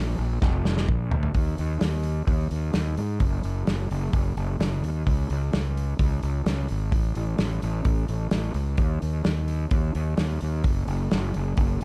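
Dark, dry production frames this upbeat yet wistful indie rock fragment at 129 BPM in 4/4, where an up-front, growly fuzz bass, overdriven and fingered, opens alone before a loose acoustic kit with a punchy kick, medium-tuned snare, hi-hat and toms comes in at 0.4 seconds with a fill that runs to 1.3 seconds, after which both carry the groove to the cut at 11.8 seconds.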